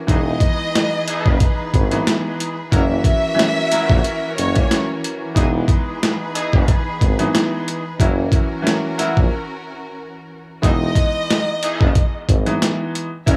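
A gritty, overdriven sampler-style boom-bap drum kit sits up front at 91 BPM with a 16th-note swing, driving this soulful, nostalgic hip-hop excerpt in E lydian over an Emaj7 to F#7 vamp, as a scooped, distant tuba carries the bass, a worn, woody, slightly detuned upright piano with cassette-tape colour plays the accompaniment, a tight vintage jazz-style horn section adds echoing stabs, a rich, focused string section holds sustained chords until 10.6 seconds, and a lush violin section sings the tape-echoed melody, dropping out at 4.9 seconds and returning at 10.6 seconds after a break, all in a small room ambience.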